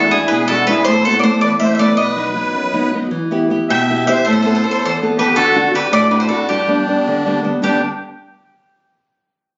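Captured on a phone in the room, this short Italian folk serenade has a compressed sound whose top end stops at 7.8 kHz, set in a moderate studio reverb. It sways in a straight 6/8 at 107 beats per minute in dotted quarters, in G major, and the mood is sunny and romantic. Up front, a bowl-back mandolin carries the melody between G4 and G5, its bright, picked double strings bathed in plate reverb. Beside it, a fingerpicked nylon-string guitar gives a warm, small-sounding accompaniment from E2 to A4, while a musette accordion plays a reedy, shimmering second line between D4 and E5, its wet musette tuning adding a gentle waver. The harmony moves from E7 through Amadd9, B, Em, Amadd9 and D7 before settling on G at 6.5 seconds, and all three instruments play together until the fragment breaks off at 7.8 seconds.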